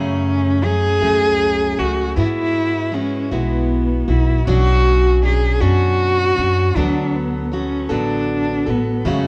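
A dark, bowed cello carries the melody with close, woody vibrato, while a picked dreadnought acoustic guitar and a pizzicato upright bass with tube saturation sit beneath it from the first second. This melancholic, haunting acoustic folk fragment moves slowly in 6/8 at 52 BPM through F#madd9, Eadd9/G#, Bmadd9 and D6. Light reverb surrounds the trio, and the worn, warbling pitch drift of old cassette tape colors the whole short cut.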